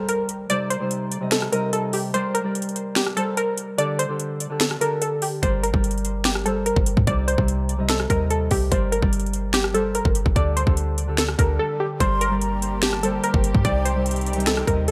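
A digital ambience surrounds this menacing, eerie trap excerpt in G minor at 146 BPM with a half-time feel, where a warbling, lo-fi, detuned sawtooth pluck carries the melody over a thumb-plucked, ringing Celtic harp, very quiet electronic impacts and swells flicker in, an overdriven trap kit sits up front with a hard-clipped kick, sharp snare, metallic hats, finger snaps and rim clicks, a deep, boomy sine 808 bass arrives at 5.4 s, and at 12.0 s a veiled, con sordino string section and an airy, hollow flute in the background join.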